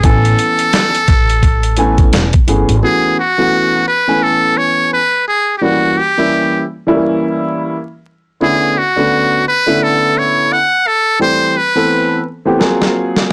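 Relaxed and cool, this jazz-hop fragment at 86 BPM in A major features a buzzy, close-miked muted trumpet melody with light vibrato and scooped notes over a dark, mellow baby grand piano, while a woody pizzicato upright bass and a gritty, pitched-down boom bap kit with a thumpy kick play only until 2.8 seconds before the drums return for a fill at 12.6 seconds, all within a blown-out, overdriven recording dusted with vinyl crackle and light reverb.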